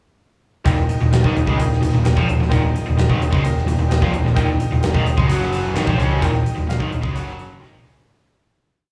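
Classic rock with a swaggering, sunny mood, driven by a power-chord riff from two overdriven guitars, a raw one with slapback echo and a very quiet cranked stack, doubled by an up-front, growling bass on simple root and fifth, over a punchy arena drum kit in a pumping rock groove, while a brilliant, woody upright piano with slapback echo plays close-voiced quarter-note chords in the background and a very quiet tonewheel organ holds smooth chords through a slow rotary speaker, the whole live club performance fading out from 6.2 seconds into a drum fill at 7.6 seconds.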